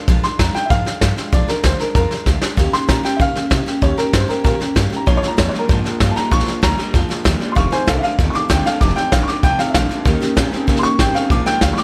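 Rollicking and rowdy, this 192 BPM rockabilly excerpt in Bb mixolydian puts a woody, boxy upright piano with tape echo on a soloing melody over a bright dreadnought acoustic guitar in plate reverb, a dark pizzicato upright bass in the background, and an up-front brush drum kit with a punchy kick that snaps off a fill at 2.3 seconds, while a twangy, slightly broken-up electric guitar joins with a lo-fi riff at 5.1 seconds as the chords move from Bb7 through Eb7 and F7.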